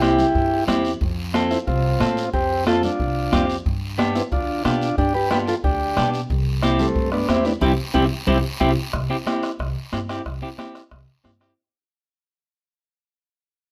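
This sunny, danceable cumbia excerpt opens with a reedy, overdriven combo organ up front on the melody, a dark, clean semi-hollow electric guitar also up front in accompaniment, and a very quiet, fingerpicked nylon-string guitar adding a second line over a woody, growly pizzicato upright bass. Beneath them sit a saturated bombo played with a soft beater, damped, high-tuned congas in the background and a raspy, close guiro, all in a moderate studio room. A drum fill and band accent arrive at 7.6 seconds, the organ and nylon guitar stop at 8.7 seconds, and the remaining band fades out from 8.9 seconds.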